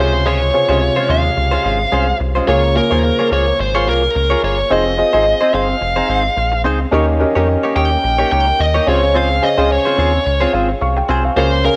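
Pop with a nostalgic, uplifting mood and a light swing, this short cut from a longer piece carries a bluesy, distorted lead guitar melody that sits up front over a clear concert grand piano with a worn cassette-tape character, a bright, twangy clean electric guitar riff with subtle chorus, and a round, deep analog bass. The chords move from Dbmaj7 through Bbm7/Db, Fm7 and Eb7 before returning to Dbmaj7. A grand piano fill arrives at 10.3 seconds, and the whole take has the light reverb and homespun feel of a cassette home recording.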